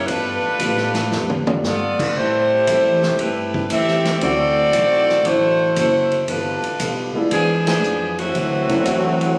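A phone recording made in the room catches this short cut from a longer big band swing piece, with a moderate concert hall reverb around a joyful, swinging groove at 116 BPM in G mixolydian. An edgy, tight saxophone section with light vibrato carries the melody up front, over a polished upright piano, a dark, clean hollow-body archtop guitar, a thumpy gut-string upright bass and a distant, roomy drum kit with a boomy kick. The drums play a fill at 1.1 seconds and the band hits an accent at 7.6 seconds, before a bright trombone section enters with a second line at 8.2 seconds.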